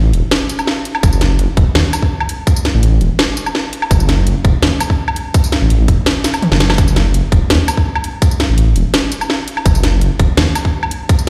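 A deep, rumbling detuned sawtooth bass dominates this dark, cinematic half-time drum and bass fragment, its beating, sustained tone sitting up front from the start until 10.5 seconds. A layered, overdriven electronic drum kit with a cracking snare, bright hats, tambourine, toms and woodblock joins almost at once, and a tight electronic kick, likewise pushed through overdrive, enters at 1.0 seconds, with a drum fill arriving at 6.2 seconds. Light digital ambience and a large studio reverb give the impression of a big sound system playing in a bare room.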